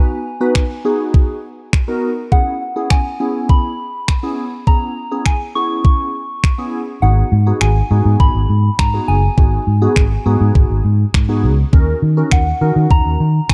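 A dark, dry production with little reverb frames this confident, bittersweet dance-pop excerpt in G# minor at 102 BPM. A soft, pure FM synth bell carries the melody through chorus, phaser and delay over glassy, detuned digital keys that pump with sidechain, while a thumpy, sampler-style 12-bit drum machine of kick and finger snaps sits up front from 0.6 seconds. A round, foam-muted vintage electric bass enters at 7.0 seconds, also pumping, as the kick drops out until 8.2 seconds over chords moving from G#m7 to C#m7 and later D#m7.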